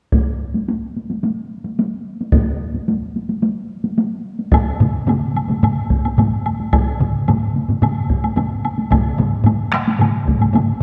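This excerpt of a Japanese traditional taiko drum ensemble opens with solo taiko drums and a taiko ensemble sounding together, powerful and driving in a straight 4/4. The solo taiko drums are struck with hard sticks and sit up front, yet carry a distant, large-room character. At 4.5 seconds a dry, close woodblock with a woody tone enters, and two more taiko ensemble parts join at 4.8 seconds to thicken the second section. One taiko ensemble hits with heavy sticks and sounds compressed and saturated at the front of the mix. Another, played with hard sticks, is close and dry, while a third sits in the background with a small-room sound. The whole recording is bathed in a wet concert hall reverb of 1.8 seconds, giving it a dark, warm production.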